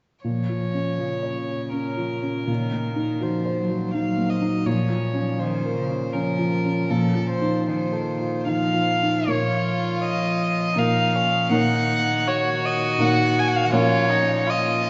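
A dark, mellow grand piano and a soft-edged cello playing sul tasto open this melancholic, elegiac fragment of a slow romantic piano quartet movement. A moment later a pure, floating violin takes the melody up front, bowed gently in a rubato 3/4, while the piano's long sustain blooms in a spacious church reverb. At 9.3 s a second, rich-toned violin joins with its own airy counter-line, thickening the mournful texture as the phrase drifts toward its close.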